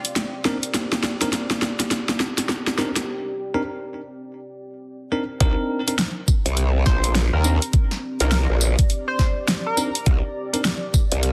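A fat-snared, overdriven pop drum kit with hats and tambourine opens this gritty, swaggering glitch hop excerpt at 103 BPM in C minor, over a deep, moody sawtooth pad with chorus and sidechain pumping, while a bell-like tine electric piano adds clean, delayed stabs from 0.5 seconds. After a drum fill and a short break, the drop arrives at 5.4 seconds on a Cm9 chord, where a knocking overdriven kick and an aggressive, wobbling growl bass push up front. A tearing, edgy sync lead with vibrato and analog chorus enters at 6.9 seconds, all inside a dense, heavily limited modern master with light reverb.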